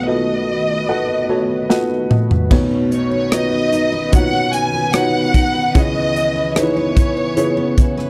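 The sound is dry and close, like a 1970s studio recording with little reverb, and this short excerpt from a longer piece is an emotional, tender pop ballad at 74 BPM in a straight 4/4. A lush, up-front violin section carries the melody with vibrato, soft attacks and a smooth top, given a slapback echo. A felt-muted upright piano accompanies in a mellow, boxy, intimate tone with audible action noise, and plays a fill from 0.9 seconds. A glassy, ethereal FM pad holds dark, slow-blooming chords, shimmering with ensemble chorus and its own reverb. A polished studio drum kit with a tight kick and medium-tuned snare enters up front with a fill at 1.7 seconds, and at 2.5 seconds a woody, full-bodied steel-string acoustic guitar on old strings adds picked arpeggios with slapback echo in the background, as the harmony moves from B7 through Badd9 to C#m7.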